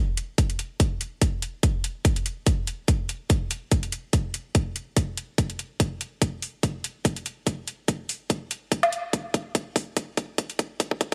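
Heavy wobble dubstep at 144 BPM in 4/4 with a half-time feel and a 55% swing on the sixteenths, this aggressive, chaotic excerpt is a build-up driven by a filter sweep across its full 11.1 seconds. Electronic hi-hat and woodblock enter at 0.2 seconds with layered, metallic hats, joined at 0.4 seconds by a punchy, up-front electronic kick drum, both tape-tinged and set in a small room ambience. A drum fill takes over from 5.8 seconds, and the dry, high-passed mix carries a faint mains hum.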